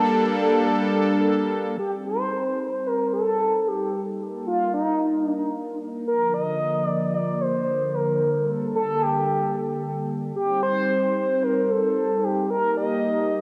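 A straight 4/4 pulse at 112 BPM carries this nocturnal, nostalgic synthwave passage in C dorian, tuned to A4 = 443 Hz, cut from a longer piece and moving through chords like Gmadd9, Cm, Eb and Bb. A smooth, nasal synth lead with vibrato, chorus and tape echo sings the melody up front, while a bold, detuned sawtooth pad holds brassy sustained chords with a soft attack and chorus, and a filter sweep moves across the pad from 1.8 s. A wet plate reverb soaks the mix in a dreamy haze.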